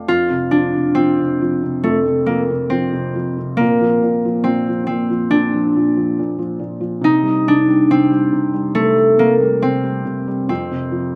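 A ringing, fingerpicked concert harp sits up front carrying the melody of this innocent, gentle children's lullaby at a rubato 69 BPM, while a soft, mellow felt-muted upright piano with audible action noise plays an intimate accompaniment underneath, all heard in a dry outdoor setting with little reverb in an 11.2-second excerpt cut from a longer piece.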